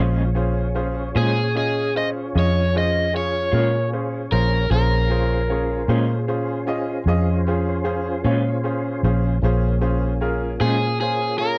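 Slow blues in 12/8 at 51 BPM, brooding and mournful in Bb minor, sitting on a single Bbm7 chord in this dry, close 1970s-style excerpt, where a round, punchy foam-muted electric bass sits up front beside an overdriven semi-hollow guitar that enters at 1.2 seconds with the melody, while a woody, boxy upright piano and a slightly broken-up, lo-fi electric guitar with tremolo accompany, the latter stopping at 10.9 seconds, and a smooth tonewheel organ with key click, chorus vibrato and a slow rotary speaker holds chords in the background.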